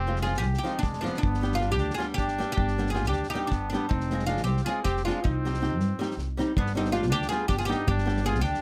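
A quick 7/8 at 315 BPM in eighths, with a straight feel, carries this fiery, bittersweet Balkan wedding-band excerpt, cut from a longer piece, moving through F minor, G and C minor chords. A bright, woody oud with doubled strings leads up front, plectrum-plucked and fretless, while a clear trumpet with a smooth top plays a classical-style second line. Beneath them, a thumpy pizzicato upright bass, a fingerpicked flamenco guitar with audible finger squeak, and a loose indie drum kit with tight kick and medium-tuned snare fill out a dry, close, detailed sound.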